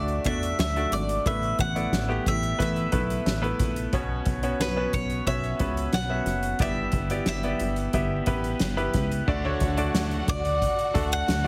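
A picked bowl-back mandolin opens this piano-driven pop fragment at 0.0 seconds, its doubled strings carrying an up-front melody over a brilliant, polished grand piano and a punchy, plucky analog bass with a funky sawtooth edge, fast in its attack and decaying. Soft-mallet drums fill out the kit almost at once, giving a fat snare, boomy kick, hi-hat and crash a cushioned, big-room acoustic body. The straight, unhurried groove moves through D, Asus2, Bsus2 and G6 with an anthemic, warm lift. At 9.3 seconds the harmony returns to D as a new section begins, and a lush bowed violin section enters in the background with expressive vibrato. The whole mix sits in light small-room reverb under heavy, radio-style multiband compression, and the clip, cut from a longer piece, ends at 11.5 seconds.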